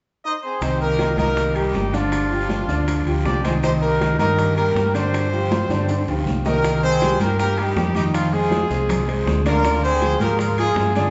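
A brilliant horn section leads this driving, danceable salsa excerpt, its octave-doubled, close-miked lines carrying the melody from the opening moments with a light vibrato and a pop-style polish. Just behind it, a clear concert grand piano with a deep, vintage low end and long sustain supplies the accompaniment, while a dark, punchy fingered electric bass sits up front with a round, amped tone. The percussion fills out the groove from 0.6 seconds: distant, high-tuned congas with a bright, thin skin, low-tuned bongos and ringing metal-shell timbales kept very quiet, plus a raspy guiro and grainy maracas tucked into the background. The harmony moves between Cm7 and G7sus4 before turning toward Fm7 and Ddim in the second half, and a drum fill from 5.5 to 6.6 seconds marks the shift. The band sounds as if playing live together in one large studio, bathed in a wet reverb with a softened top end.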